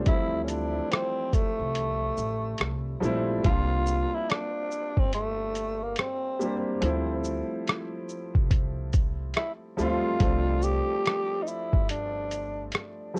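A breathy, raspy tenor saxophone with tape echo carries the melody in this reflective, melancholic lo-fi hip hop fragment at 71 BPM in D minor with a swung 16th feel, over an open, long-sustaining upright piano coloured by cassette tape, a growly pizzicato upright bass and a muffled, pitched-down sampler drum kit of hi-hat, thumpy kick, rim click and shaker, the kick dropping out from 1.8 to 3.4 seconds as the chords move from Dm11 through C7sus4 and back to Dm11 before settling on F69 in a lightly reverberant home cassette sound.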